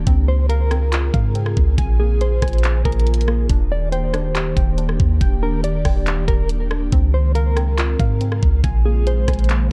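A deep, round 808-style bass sits up front in this short cut from a longer atmospheric cloud-rap track, its sine-like notes striking quickly and then decaying into the dark low end. An electronic trap kit with a knocking kick, bright hi-hats, handclaps and rim clicks joins at 0.1 seconds and drives a half-time 4/4 feel. Beneath them, an ethereal, airy pad holds sustained chords with a slow attack and long release; its detuned, warbling vintage tone is thickened by ensemble chorus, built-in reverb and sidechain pumping. A soft, gentle pluck plays arpeggios in the background, colored by chorus and digital delay. From 0.3 seconds a mellow, clean electric guitar carries the melody, fingered and shaded with tremolo and delay, while the harmony moves through Dbmaj7, Bb7sus4 and Ebmaj7. The blissful, dreamy mood comes through a dark, warm production with little room sound.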